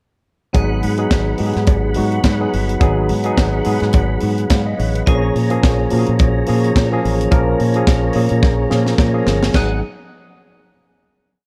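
A dark, lightly reverberant production frames this sultry, glamorous disco piece, driven by a tight funk drum kit with a high-tuned snare and a four-on-the-floor beat with open hats on the off-beats, swung slightly on the sixteenths, until a drum fill at 8.4 seconds leads to a final chord at 9.5 seconds. A round, punchy fingered electric bass plays octave disco lines with slides and chromatic approach notes, while a worn, slightly out-of-tune, barky tine electric piano sits up front with syncopated drop2 chords, grace notes and short fills. Beneath them a mellow, percussive tonewheel organ holds a sustained pad through chorus vibrato and a slow rotary speaker, and a very quiet, metallic, saturated cowbell marks quarters.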